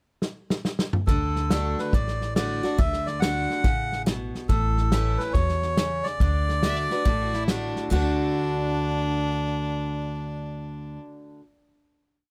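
A sunny, down-home honky-tonk and classic country piece in D major at a swung 140 BPM opens with a drum fill at 0.2 seconds, before a punchy natural kit plays a train beat, a woody pizzicato upright bass thumps out two-beat root-and-fifth lines, a bright, boxy parlour acoustic guitar alternates bass notes and strums with bass runs, and a reedy, breathy melodica carries motif-based phrases up front, until a clear fiddle with light vibrato adds intense blues licks from 6.6 seconds into a final held chord at 7.9 seconds, all captured close and dry.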